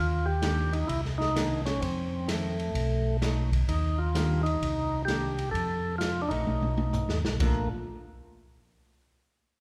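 Soul jazz organ trio music with a soulful, greasy mood and a swung 4/4 feel, heard in a short passage cut from a longer piece. Up front, a percussive tonewheel organ carries the melody with a full, clean tone, its key click and second-harmonic percussion set against a slow rotary speaker. A second, mellow tonewheel organ holds down the bass in a round, dark register, colored by chorus vibrato and its own slow rotary. From 0.4 s, a clean, picked archtop guitar with a hollow-body tone adds accompaniment in the background, while an acoustic jazz kit with dark cymbals, a medium-tuned snare and a boomy kick plays hi-hat, ride, snare and toms. The drums break into a fill at 6.5 s as the second pass through the Ebmaj7, Cm9, F7, B7 cycle reaches its B7, landing on Bbmaj7 at 7.4 s, all set in a moderate recital-hall reverb.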